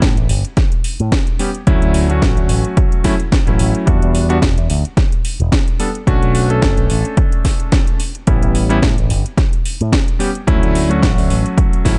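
A swung 4/4 groove at 109 BPM drives this cosmic, sensual nu-disco excerpt, built on a punchy, overdriven electronic kick up front and a house kit with a cracking snare and metallic hats, both re-recorded in a large room. A bright picked electric bass with an envelope filter holds the low end from E1 to A2, while a vintage electric grand piano with a clangy bass and long sustain enters at 1.4 seconds, pumping against the sidechain with slapback echo over chords moving from A7(no3) through Dmaj7, Em7, Bm7 and A7 before returning to Dmaj7. The production is dark and dry, topping out at 10.9 kHz.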